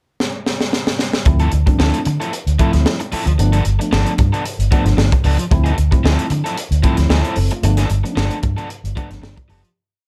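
Funk in D dorian at 113 BPM, driving and funky, opening with a drum fill on a crisp fusion kit whose high-tuned snare, punchy kick and gritty, saturated small-room sound sit up front in a tight sixteenth-note groove. At 1.3 seconds a dark, round, foam-muted electric bass enters with a syncopated riff anchored on the downbeat with chromatic approach notes, joined by a bright, compressed overdriven guitar playing sixteenth-note rhythm with muted scratches and a worn, slightly out-of-tune tine electric piano pushing rootless stabs with grace notes over Dm9 and G9. The dry mix fades out from 7.6 seconds as the electric piano adds a short closing fill.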